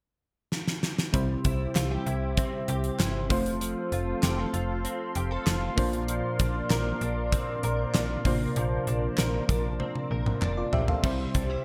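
1980s-style pop at 97 BPM in C mixolydian, this romantic, uplifting excerpt opens with a fill at 0.5 seconds from a gated, big-room drum kit with a fat snare and bright cymbals, before a snappy, metallic FM slap bass, a mellow, phased FM electric piano, a smooth, detuned analog pad with lush chorus and a clean, direct-recorded guitar riff with ensemble chorus and tape echo all enter at 1.1 seconds over C, F and Bbadd9 chords, joined at 1.8 seconds by very quiet, crisp group handclaps.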